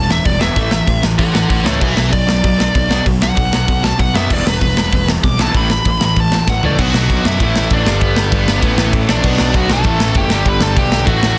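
Punk rock at 194 BPM in B minor, raw and angry, this short cut from a longer piece opens with a bluesy, distorted lead guitar soloing over a bright, compressed rhythm guitar, a sludgy, dark guitar riff in the background and a round, fuzzy picked bass. A tight, gritty metal drum kit sits up front with bright cymbals and an airy big-room sound, and it plays a fill from 6.5 to 6.8 seconds that ends the solo as the chords move through Bm, A and G. The dense, heavily limited master carries light reverb.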